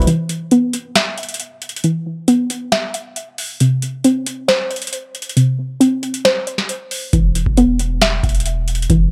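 A half-time trap groove drives this dark, melancholic hip hop excerpt, cut from a longer piece. A booming analog drum machine supplies a deep kick, crisp snare and metallic hi-hats, overdriven and up front, with the grit of being re-recorded in a small room. Over it, a soft, round pluck plays arpeggios from start to finish, its gentle tone blending triangle, sine and sawtooth with a noise layer, softened by chorus, a low-pass filter and analog delay while a filter sweep moves through it. A long, sustained 808-style bass with a sine-like, mellow decay sounds only briefly at the opening, then drops out for a break and returns at 7.1 seconds as the harmony comes back. The mix is dry and hardware-rough, with little reverb.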